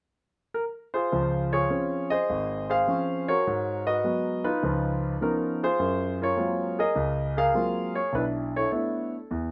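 Solo jazz piano at 103 BPM in 4/4, with a swung eighth-note feel and a playful, sophisticated mood, cut from a longer piece in Db major. The grand piano is the only instrument, entering at 0.5 s and carrying the whole passage until it stops at 9.5 s. Its tone is warm and natural, placed up front in a light reverb, and it ranges from a deep Ab1 in the bass to F5 in the treble. The harmony is lush and extended, opening on Fmadd11 before settling into Dbmaj7 at 1.1 s. From there it moves through Abm9, Db9 and Gbmaj9#11, then arrives at Cbm11 near the close. The result is a colorful fragment of unaccompanied jazz piano with a gentle swing.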